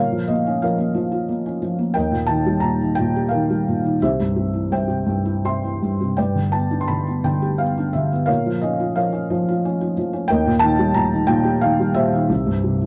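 Bittersweet and moody, this short classical excerpt of lyrical solo piano unfolds in a rubato 3/4 at around 79-92 BPM, its felt-muted upright sounding soft, intimate and mellow up front, with thick felt, audible action noise and a dark cast, through a modest small-room reverb as chords move from Bbm through Eb, C and G before circling back to Bbm across 12.9 seconds.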